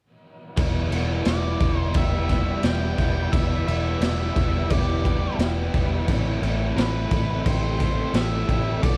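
At a straight 87 BPM in 4/4, this brooding, melancholic shoegaze and dream pop excerpt in E minor opens at 0.6 seconds with a raw, gritty garage drum kit up front (boomy kick, medium-tuned snare, crash), a round, foam-muted vintage bass, two overdriven guitar riffs in the background (one biting with reverse reverb, the other through analog chorus), and very quiet lo-fi arpeggios from a guitar through a small old amp, before an octave-fuzz lead melody with slapback echo joins at 1.3 seconds and a silky, very quiet string machine adds sustained chords from 2.2 seconds, all in a dark, lightly reverberant small room as the harmony moves from Em7 to Am9.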